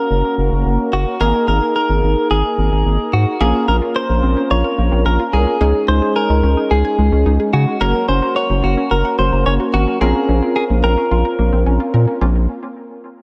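Light reverb and plenty of echo give this driving, cool synth-pop excerpt a spacious, repeating sheen. A clean, compressed electric guitar carries the picked melody up front through analog delay, while a punchy, funky polysynth comp of detuned sawtooth with a moving notch adds chorus and delay, and a deep, wave-folded analog bass sits prominently underneath. At 3.4 s a nasal, detuned pluck with a noise layer joins in the background, spinning arpeggios through chorus, phaser and delay.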